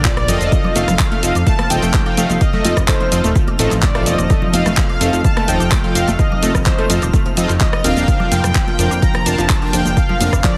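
Progressive house excerpt with a euphoric, hopeful lift, where a smooth, evolving supersaw melody rides over a punchy up-front kick, a tape-toned house kit of claps, hi-hat, rim click and shaker, a fat saturated analog bass, a lush detuned pad, sidechain-pumping chorused polysynth stabs and a round analog pluck arpeggio, with dry congas and woodblock plus a faint twinkling granular shimmer in the background, all squeezed into a heavily compressed, radio-like sound with light reverb.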